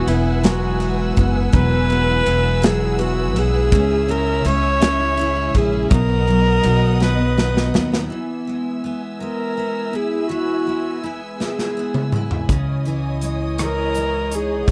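This dry, close-sounding piece of a longer six-eight pop ballad sways with a romantic feel. A single viola carries the melody up front, its tone intimate and airy with light vibrato, soft attacks and a hushed sul tasto bow. Beneath it, a double-tracked picked steel-string acoustic guitar gives bright, full-bodied jumbo accompaniment, while a second picked acoustic guitar adds warm arpeggios in the background. A lush, woody studio string section holds sustained chords, and a pizzicato upright bass with steel strings sits up front beside a punchy modern drum kit in a pumping studio room, with kick, snare, hi-hat, ride, rim clicks and toms. After a drum fill, the bass and drums drop out at 8.1 s as the harmony moves into a new section and the arpeggiated guitar soon falls away. The drums return with another fill at 11.4 s, and the bass rejoins at 12.5 s.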